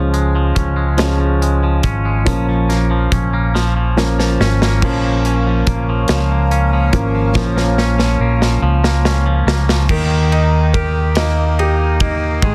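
A clear, polished baby grand piano carries a melancholic, aching six-eight pop ballad at 47 BPM in Bb dorian from the first second, taking solo lines over twangy, clean picked electric guitar arpeggios with vibrato, a round, punchy fingered electric bass up front and a dark, tight modern studio kit with a softly clipped snare and drum fills, while a shimmering, retro chorused pulse-width pad sustains dark chords in the background from 4.8 to 9.9 seconds, the harmony moving from Db to Bbm and then Eb in a small room with a dense, heavily limited master.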